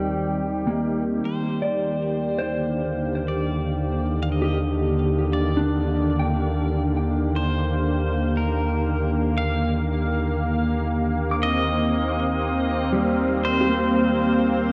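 Peaceful and luminous, this ambient fragment drifts in a slow, straight 4/4, cut from a longer piece and bathed in a vast, wet reverb with the worn, warbling pitch drift of old cassette tape. An analog pad sits up front with smooth, detuned sawtooth and triangle tones, a soft attack, long release and subtle chorus, holding sustained chords that open on Eb and settle into Ebmaj7 at 1.3 seconds. Beneath it, a round sine sub bass holds a deep Eb, fading out as the piece goes on, while a dark, clean, fingered electric guitar traces compressed arpeggios through a delay. At 1.3 seconds a pedal steel guitar fades in, its fingerpicked slide melody shaped by volume swells with a delay trail behind it. The overall effect is a hazy, glowing stillness, with the pad up front and the other parts blurring into the long reverb tail.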